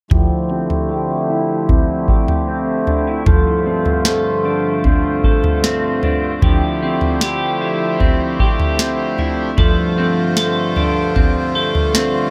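Dream pop at 76 BPM in a straight 4/4, this dreamy, blissful excerpt drifts between Dm11 and G9sus4, tuned slightly below standard pitch to A4 = 438 Hz. A booming analog drum machine sits up front with a deep kick, crisp snare and toms, its tape-warm character giving the beat a warm weight until it stops at 12.1 s. A clean electric guitar, bright and twangy, picks arpeggios through a lush chorus, analog delay and a low-pass filter. Alongside it, a reedy, warm accordion sits up front and holds sustained chords with a slow, beating shimmer, also softened by a low-pass filter. Moderate spring reverb with a 2.5-second tail and a filter sweep across the whole passage wash the echo-heavy mix into a hazy glow, and the music runs on as though cut from a longer piece.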